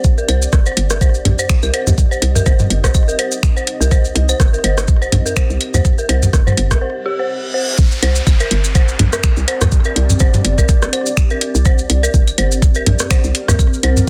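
A dense, heavily limited modern mix in digital ambience carries this quirky, sparse minimal techno cut from a longer piece at 124 BPM in C minor, where an up-front, tape-warm knocking electronic kick, a hollow, bouncy FM bass with sidechain pumping, and grainy, close maracas are joined by a booming analog drum machine of finger snaps and metallic hats, an organic electronic kit of claves, rim clicks and toms in small-room ambience, an eerie, inharmonic detuned synth bell riff with chorus, tape echo and pumping, and a cloudy, evolving granular pad, before a break at 6.8 seconds brings a reverse cymbal and downlifter at 7.2 seconds ahead of the drop at 7.8 seconds.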